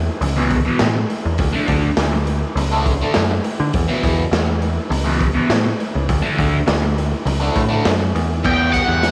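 Psychedelic rock in E dorian at 102 BPM, dark and mysterious, with a picked electric bass sounding round and punchy from the first moment, joined at 0.2 s by a bright, double-tracked fuzz guitar riff run through phaser and a raw garage drum kit that is gritty, muffled and lo-fi, with a punchy kick and crash cymbal in a stone room. The harmony rocks between E5 and D5 power chords before settling on E minor at 8.4 s. At 8.5 s an up-front, dark octave-fuzz lead guitar cuts in high with wah and tape echo just as this short cut from a longer piece ends, all sitting in light studio reverb.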